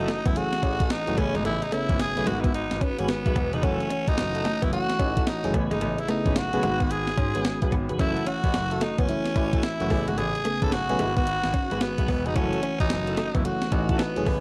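Swinging 16ths at 110 BPM drive this punchy, bouncy new jack swing excerpt in F# dorian, where an overdriven, crisp 8-bit drum machine with a thumpy kick sits up front beneath a raspy, breathy tenor saxophone melody, while a glassy, bell-like FM electric piano with chorus comps over F#m7, Amaj9 and G#m7, a grand piano carries the bass, a smooth tonewheel organ with chorus vibrato and slow rotary speaker adds background stabs, and a direct-recorded clean electric guitar plays a compressed, lush-chorused riff in a dark, warm mix with light reverb.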